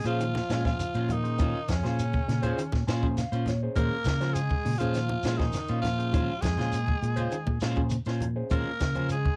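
A breathy, raspy tenor saxophone carries the melody over a clear trombone second line, both with vibrato and a cassette-tape grit, as a round, up-front fingered bass, a quiet dark envelope-filtered guitar, a twangy, slightly broken-up guitar's stabs, a barky overdriven tine electric piano through phaser (with a fill at 2.6 seconds), a dry cocktail kit with a high-tuned snare and punchy kick, and background shekere and low-tuned congas drive this defiant afrobeat excerpt in Bb minor at 101 BPM on a Bbm9 chord.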